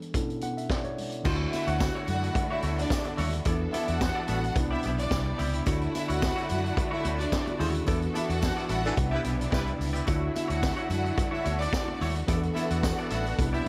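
A dry mix opens this driving, danceable disco excerpt at 109 BPM, with a worn, slightly out-of-tune electric piano, lightly overdriven through a combo amp, playing a fill over a vintage drum kit with a punchy kick, high-tuned snare and dark cymbals, while ringing high-tuned congas sit very quietly beneath. From about 1.3 seconds, a round, foam-muted fingered bass, clean picked semi-hollow guitar, jingly tambourine, distant symphonic strings holding sustained chords and a lush, close violin section carrying a second line fill out a progression moving through Dmaj9, E7sus4 and Cmaj9. During a band accent, a punchy horn section with light vibrato adds brief stabs treated with analog delay at 8.9 seconds.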